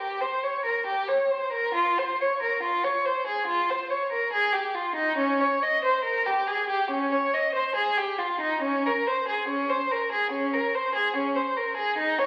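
A single bowed violin carries this grave, flowing baroque-style suite movement alone from 0.0 to 12.3 s, its warm, smooth tone shaded with vibrato and shaped with an unhurried rubato in 4/4. The instrument sounds up front yet slightly distant inside a reverberant recital hall, and the whole fragment, cut from a longer piece, is heard through the crackle of a very old 78 rpm record.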